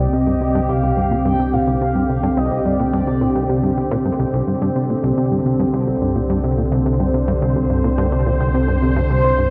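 Hypnotic and expansive, this ambient excerpt at 107 BPM in straight 4/4 sets a sweeping, detuned resonant pad with chorus up front over a punchy, funky plucky analog bass riff with tape echo and a filter sweep, a deep round analog bass holding C2, and a mellow horn-like synth lead with vibrato, phaser, lush chorus, cassette tape and tape echo that sings from 0.0 to 3.8 seconds and returns at 9.1 seconds, all bathed in a concert-hall reverb around a C chord.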